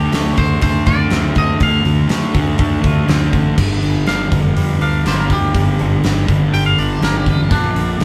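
Quiet-loud alternative rock in G minor at 122 BPM, this dark, brooding excerpt from a longer piece moves with a straight 4/4 feel and captures a band playing live in one room with light reverb. A thick fuzz guitar sits up front with a distorted, picked riff, while a big rock drum kit, also up front, brings a fat snare, punchy kick, hi-hat and crash cymbal with a smooth, dark big-room sound from 0.1 seconds. Underneath, a fingered electric bass growls with bright, overdriven fuzz. Two twangy clean electric guitars fill out the arrangement: one, compressed and set in the background, carries the picked melody spanning D4 to G5, and the other, with a scooped tone, plays arpeggios. The harmony opens on Dm7 and shifts to Gm as a new section begins at 3.6 seconds, where a clean electric guitar solo comes in, and it lands on Bb near the end.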